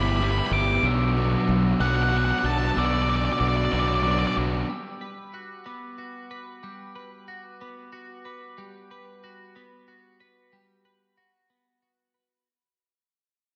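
A dark, fuzz-laden octave lead guitar sits up front at the start of this hopeful, cinematic post-rock passage, carrying the melody over a slow 6/8 pulse at 62 BPM in G major, its distorted tone trailed by tape echo. Beneath it, a pair of picked electric guitars play a riff: one crunchy and overdriven in the background, the other bright, compressed and distorted, both touched with slapback echo. A growling, overdriven fingered bass holds the low end up front, while a mellow glockenspiel struck with rubber mallets rings out bell-like arpeggios high above until 8.6 seconds. At 4.7 seconds the heavier parts fall away, the harmony moves from Em7/G and Bm to Gmaj7, and a twangy, clean twelve-string electric guitar takes up arpeggios shimmering with analog chorus and tape echo as the music fades out through 12.5 seconds. A lush hall reverb gives the whole passage a big arena sound.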